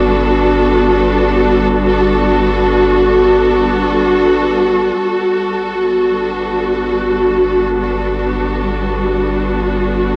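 A lush, up-front studio string section opens on a sustained Gmaj9 chord, its bowed ensemble tone focused and smooth on top with vibrato, over a deep, round sine sub bass holding a low G with transformer saturation. This serene, warm ambient passage in G major floats in free time, and the whole recording is bathed in a huge reverb with an 8.1-second tail and the worn, warbling pitch drift of old cassette tape, moving into a new section at 5.0 s. Both parts sustain through to 10.2 s, where this fragment of a longer piece is cut off.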